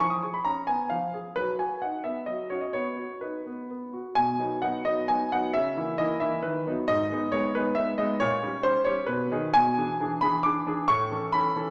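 An up-front, clear concert grand piano plays this elegant, playful fragment of a classical-period sonatina alone, in B major and 3/4 at 134 BPM with a rubato feel, its worn tone and deep bass set in a wet recital-hall reverb with lossy compression artefacts, as a new section begins at 4.2 s and moves through shadowed diminished and minor harmonies before settling on an A chord near 10.9 s.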